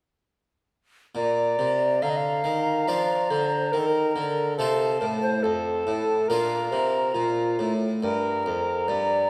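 Serene and flowing, this short cut from a longer baroque-style sonata movement moves at 70 BPM in Bb major, tuned to A4 = 438 Hz, with a close, dry, plucked harpsichord entering at 1.1 seconds to lay down the continuo over chords moving from Bb through F7 and back to Bb before settling on Gm. An airy, woody tenor recorder carries the melody with a straight tone and a distinct chiff, while a hollow, pure concert flute with vibrato sings a high second line and a mellow, distant bassoon supplies the bass. A recital-hall reverb with a 1.8-second decay lends the ensemble a roomy glow through to 9.3 seconds.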